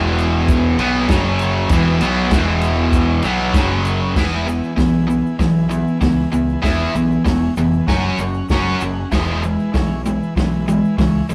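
A double-tracked, overdriven guitar riff opens this rowdy, raw garage rock fragment at 97 BPM in E major, with a growling fingered bass and a buzzy combo organ holding sustained chords with a light vibrato in the background. At 0.2 seconds a vintage acoustic drum kit joins with a punchy kick, a medium-tuned snare, hi-hat, ride and crash cymbals, along with a grainy tube shaker tucked far back. The bright, cranked guitar sits up front, and the bass adds its own overdriven, punchy edge in a low register. The harmony alternates between E and F#5 in a straight 4/4 feel, with the second stretch beginning at 4.2 seconds. A moderate stone-room reverb and saturated rehearsal-room sound give the whole thing a rough, live character.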